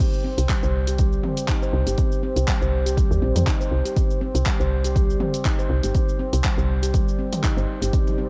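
This afro house excerpt has a warm, driving feel over a swung sixteenth-note groove in 4/4, resting on a single minor chord. A mellow, ringing handpan plays meditative arpeggios from the start, its soft fingertip tone breathing with sidechain pumping and trailed by analog delay. Beneath it, a punchy, layered electronic kick and a produced deep house kit of crash cymbal, handclaps, hi-hat, shaker and toms carry a cassette-tape grit. A woody, round FM bass with a fast attack and dark decay enters at 0.4 seconds, also pumping with the sidechain. A smooth, detuned sawtooth pad with chorus and a moving notch arrives only at 7.9 seconds, and a very quiet, distant conga with a bright, thin skin sounds at 8.1 seconds. Light reverb and a home cassette recording lend the piece an intimate, lo-fi character.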